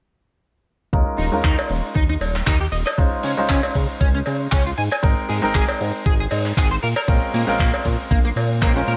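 Nu-disco at 117 BPM with a gently swung sixteenth feel, this groovy, feel-good excerpt rides a dry, close sound over chords moving from Eb7sus4 through Dbmaj7 and Ab to Bbm7. A thumpy, sampler-style electronic kick and a chorused, glossy synth bass with tube saturation anchor the groove from 0.9 seconds, joined at 1.2 seconds by a damped 70s kit with handclaps and hi-hat, a twangy, slightly broken-up guitar riff with analog chorus and slapback echo, and a cowbell from 1.6 seconds. Throughout, a bright, intimate baby grand piano with audible action noise plays accompaniment through sidechain pumping, slapback echo and a low-pass filter sweep.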